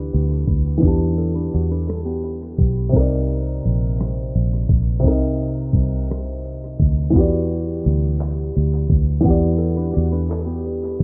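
A gritty, sampler-style soul drum kit drives this sultry, yearning slow R&B excerpt in 6/8 at 57 BPM. Its thumpy kick, hi-hat, rim clicks and handclaps carry a re-recorded small-room character. A dark, foam-muted fingered electric bass sits up front with a round, punchy tone. A clear concert grand piano supplies the accompaniment, with deep low notes and a short sustain, moving through Em9, Cm9 and back to Em9 in E minor. A clean, fingered semi-hollow electric guitar adds a quiet second line through analog delay, playing from 0.0 to 2.9 seconds and returning at 9.6 seconds. The mix is dry in its room sound yet echo-heavy, with a low-pass filter sweep running through the whole passage.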